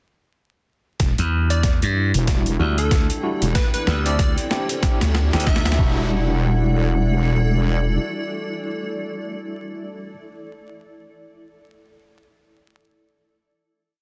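Glitch hop at 94 BPM in E minor, this short, complete piece feels funky and gritty, with a swung sixteenth-note groove and chords moving from Em9 to D9sus4 and back to Em9. Everything from 1.0 to 6.1 seconds is a build-up carried by a drum fill. A thumpy, pitched-down electronic kick and a sampler-style boom bap kit with closed hi-hat and a high-tuned snare both run through overdrive and sound re-recorded in a large room. Two basses sit up front: a heavy, resonant wobble bass with chorus and tube saturation shifts its wobble speed through modulated phrases, while a bright, punchy slap bass plays chopped phrases that answer it. Above them, a catchy square-wave unison lead with delay and a filter sweep plays short answering phrases. A barky overdriven tine electric piano, through a combo amp with fast tremolo, delay and sidechain pumping, stabs syncopated close-voiced chords. Underneath, a moody sawtooth analog pad with chorus and a cloudy, evolving granular pad with built-in reverb both pump to the sidechain, and a very quiet electronic riser adds transition effects leading into the final note at 6.1 seconds. 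The mix is dense and heavily limited, with light reverb and vinyl crackle, and the electric piano rings on alone until 10.1 seconds.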